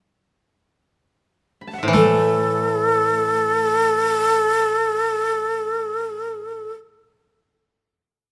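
In free time, this meditative, austere fragment of Japanese chamber music sets two dry, woody kotos played with fingerpicks, one carrying a higher second line from 1.6 s and the other a low accompaniment, beneath a reedy, breathy bamboo shakuhachi melody with vibrato and chiff held up front from 1.9 s, while a taiko ensemble struck with heavy sticks sounds briefly in the background until 2.8 s, captured with light reverb and close, detailed microphones.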